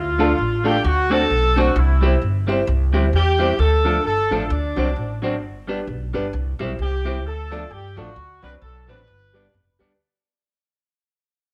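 A mellow horn section with light vibrato carries the melody in this joyful, bouncy swung ska excerpt, over a woody pizzicato upright bass, a clean, picked semi-hollow electric guitar and a dark, slightly detuned upright piano adding boxy stabs with audible action noise, set in moderate spring reverb and small-room ambience as the music fades out from 2.7 seconds.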